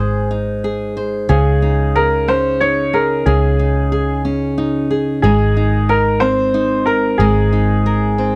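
A clear concert grand piano carries the melody from the first moment, joined at once by a fingerpicked nylon-string guitar and a dark, foam-muted electric bass, in a heartfelt, swaying pop passage in 6/8 at 61 BPM in Ab major. The piano rings open with long sustain, the guitar sounds fresh and classical, and the bass is round and punchy, with each part up front in a dry, close 1970s-style studio sound touched by light reverb. The harmony moves from Ab to Dbsus2 and arrives on Abadd9 at 5.2 seconds in this short cut from a longer piece.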